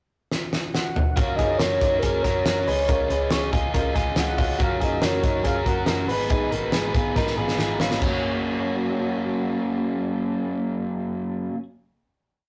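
A loose acoustic drum kit opens with a fill at 0.3 seconds, then settles into a brisk indie backbeat with a punchy kick, fat snare, dark cymbals and a pumping room sound, while a round, foam-muted bass drives eighth notes in the background. In this complete, youthful and nostalgic piece of jangly indie pop, an up-front overdriven guitar strums open chord shapes in eighths, a clean direct-recorded guitar rings out a picked figure doubled in thirds, and a soft, mellow synth lead layered with a sub octave carries hook phrases with chorus and vibrato. The rough rehearsal-room recording has a warm, saturated glow, and the piece comes to rest on a final chord from 8.0 seconds.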